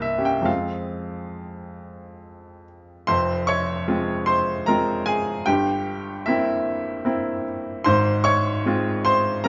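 A woody, up-front upright piano sits in light reverb, its bright tone rounded off above 7.6 kHz. This passionate, stormy romantic character piece for solo piano moves in a rubato 3/4 at roughly 66-76 BPM in F minor, spanning from deep F1 up to Db6. The harmony moves from F minor through C7 over G at 5.5 seconds and settles on F minor over Ab, a short cut from a longer work that shifts into a new passage at 3.1 seconds.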